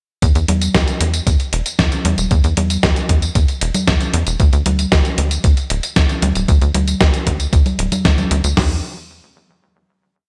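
Melodramatic and bittersweet, this short italo disco piece rides a straight 4/4 groove built from a tight, punchy sequencer bass, a sawtooth and square-wave line with a filter pluck and tube saturation, driving low eighth notes beneath two gritty, tape-warm sampler-style drum kits. One kit sets a four-on-the-floor thumpy kick with a medium-tuned snare and open hi-hat, while the other, up front with gated reverb, adds a disco machine beat of tambourine, closed hi-hat, high conga and snare. The bright 1980s-style digital production carries a light reverb, and after the chorus the piece closes on a final chord from 8.6 to 10.3 seconds.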